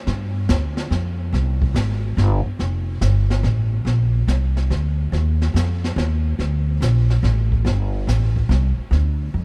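A dry, close-sounding excerpt from a longer piece, this jazz trio recording carries a cool, late-night mood in G minor, swinging at 142 BPM in 3/4 time, tuned slightly sharp to A4 = 441 Hz. Upright bass sits up front, plucked pizzicato on steel strings with a woody, growly tone that ranges from F1 to G2. A brush drum kit plays from 0.1 to 9.4 seconds alongside the bass, mixed well behind it, with brushes on a high-tuned snare, hi-hat and a boomy kick. The kit's sound is dark and smooth with a rolled-off top, as if heard in a small room. Together the two parts hold a single section for the whole span, giving a cool, late-night swing.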